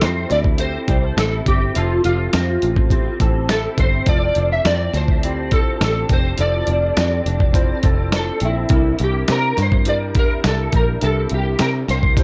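A dreamy, laid-back stretch of indie bedroom pop opens at once on a gritty, compressed soul-style drum kit, with a thumpy kick and medium-tuned snare up front, set against a round, foam-muted picked bass given a touch of tube saturation. Over this groove at 104 BPM in F major, a dark, slightly broken-up electric slide guitar carries the melody between E4 and E5, coloured by ensemble chorus and digital delay. Beneath it, an electric guitar through a small old amp adds lo-fi, picked accompaniment with a warbly pitch drift. Mellow, detuned synth keys sit in the background with a nostalgic cassette-tape wobble and chorus. The harmony moves from Fmaj7 to Dm7/F at 4.1 seconds and to C7 at 8.7 seconds. The whole mix has a worn, old-tape character, softened by light reverb and digital ambience.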